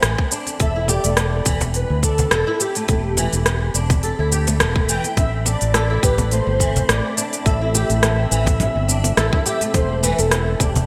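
A luminous 1980s-style digital sheen and a lush hall reverb frame this meditative organic downtempo excerpt in A minor at 105 BPM with a gentle 16th-note swing, where a breathy, warbling flute-like synth lead carries the melody over fingerpicked flamenco guitar arpeggios with chorus and delay, an up-front fretless electric bass with sidechain pumping, a tight electronic kick, an electronic kit of congas, crisp hi-hat, rim click and shaker under gated reverb, a woody cajon and an airy wind-like noise texture in the background, before a dark, cloudy granular pad enters with sustained chords at 5.9 s.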